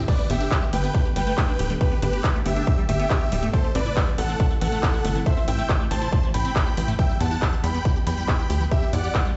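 Uplifting trance at 139 BPM in G major, this euphoric fragment moves through Gadd9, Am and Em, driven by a distorted, overdriven kick up front and an overdriven techno kit of hi-hat, ride, crash, handclaps and toms, with a punchy, nasal sequencer bass pumping under the sidechain. A huge detuned supersaw lead carries the melody with tape echo, while a squelchy, resonant acid bass runs arpeggios through chorus and digital delay in the background, joined by a silky analog string pad holding chords and a clear, intimate grand piano playing a second line with audible action noise. The whole mix sits in a large studio reverb, as if played on a big sound system in a bare room, with the top end rolled off above 8.0 kHz.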